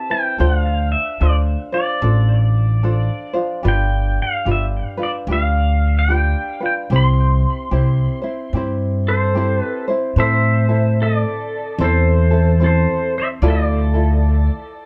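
An electric pedal steel guitar carries the melody up front, its clean, compressed tone shaped by fingerpicks, slide and volume swells, with a touch of digital delay. Beneath it, a fingerpicked acoustic tenor ukulele supplies a light accompaniment, while a woody upright bass with steel strings joins at 0.4 s, played pizzicato and sitting prominently in the mix. The mood is relaxed and languid, a Hawaiian piece with a gentle swing on the eighth notes and chords moving from Dm7 to G7 and C. At 10.2 s the harmony turns to a minor colour, passing through Am and ending on Dmadd9. Light reverb and a dark, warm production give this fragment of a longer piece a soft, intimate glow.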